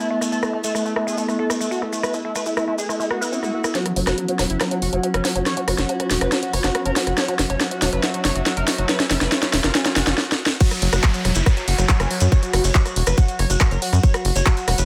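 Psychedelic trance with a psychedelic, alien mood, cut from a longer piece. It opens with a gritty, screaming overdriven synth lead carrying the melody through distortion, chorus, phaser and delay, pumping against the beat. Alongside it sit a woody wave-folded pluck riff with a cassette-tape colour, an evolving wavetable pad holding sustained chords, an airy breathy pad texture in the background, grainy distant maracas and a drum and bass kit of cracking snare, handclaps, rim clicks, hi-hat and crash, its snare, hats and cymbals filtered. A filter sweep on a synth arpeggio and a swell lead into a build-up from 3.7 seconds, where a tight, punchy sequencer bass enters and a drum fill runs on with quiet risers and downlifters beneath. After a brief stop, the drop lands at 10.6 seconds with an up-front electronic kick, the returning maracas and a very quiet, nasal vowel-sweep wobble bass as a second line. 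The mix is set in light reverb.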